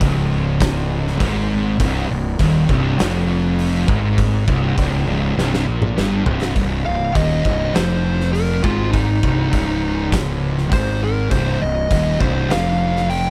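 A straight 4/4 groove drives this sludgy, heavy stoner and doom metal cut, taken from a longer piece. The oversized low-tuned drum kit sits up front with a boomy kick, fat snare, hi-hat and toms, its saturated, gritty sound carrying a big, pumping room character. A growly, overdriven fingered bass with fuzz also sits forward, while two thick fuzz guitars grind out the low riff beneath, one mellow and in the background, the other murky and very quiet. A bright, double-tracked and compressed fuzz guitar doubles the riff until 6.5 seconds, and a drum fill beginning at 5.4 seconds ushers in the second half. From 6.9 seconds a compressed, distorted lead guitar with slapback echo takes a solo up front, ringing out well above the crushing low end in an otherwise dry mix.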